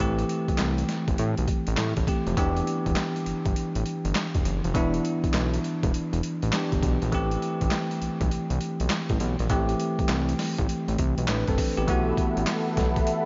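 Soaked in a dreamy cathedral reverb with a dark, rounded top end, this short clip of confident, punchy new jack swing R&B rides a swung groove from a gritty, overdriven sampler-style kit with a thumpy kick, high-tuned snare, hi-hat and handclaps. A fat, detuned sawtooth bass with a filter sweep and a bell-like, clean tine electric piano sit up front, moving through minor seventh chords. At 11.9 s a bold, brassy analog pad with chorus and vibrato eases in on a suspended chord, and a very quiet, human group handclap slips in at 12.5 s.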